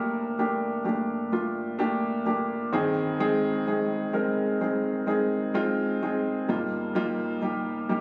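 In a straight 4/4 at a slow 64 BPM, this short pop excerpt unfolds as a solo concert grand piano piece, heartbroken and emotional in mood. The piano plays alone throughout the 8 seconds, ranging from G1 up to Bb4, and sits up front with an intimate, natural tone, deep bass and audible action noise. The harmony moves from Gmadd9 to Ab/G at 2.7 seconds, then settles on Ebadd9/G at 6.5 seconds, with G in the bass beneath each chord giving the passage an aching, unresolved quality. Light reverb on the piano and a club-like room ambience surround the sound, which was captured on a phone in the room and compressed. Tuned slightly sharp at A4 = 441 Hz, the fragment feels like a private, tender moment caught from a longer performance.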